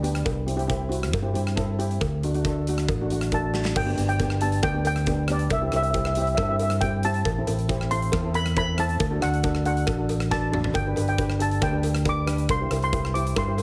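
Calypso at 137 BPM in G major, sunny and bouncy, built on a shimmering steel pan accompaniment, a dark, round fingered electric bass up front and a huge, airy arena drum kit with bright cymbals and a punchy kick, joined by a cowbell in the background at 0.3 seconds and a mellow, soft lead steel pan melody from 3.3 seconds, with drum fills at 3.5 and 10.3 seconds over chords moving through C, D, G and Am, all in a heavily compressed radio sound with moderate studio reverb, cut from a longer piece.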